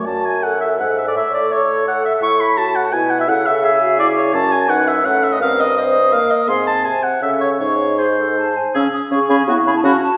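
A quick 3/4 at 167 BPM, played with rubato, drives this urgent, dramatic classical-period excerpt for wind quintet. The oboe sits up front with light vibrato, carrying the second line beneath a hollow, pure silver flute melody that stays in the background. A distant, roomy clarinet and a mellow, soft-attacked French horn fill in the accompaniment over a vintage-toned bassoon bass, all within a wet recital-hall reverb, as the harmony moves from F#m to C#m before a new section arrives at 8.8 s.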